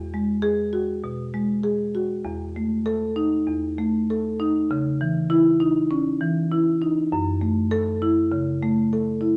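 A reverberant stone room surrounds this contemporary classical fragment for solo marimba, heard from further back in the space, while the instrument's woody rosewood bars and medium mallets still sound warm and up front. Across its 9.4 seconds, cut from a longer piece, the marimba moves freely in a flowing, playful rubato in 4/4, ranging from E2 to A4. Its harmony drifts from Eadd9 to Esus4, then C#madd9 and finally F#m7 at 7.1 seconds.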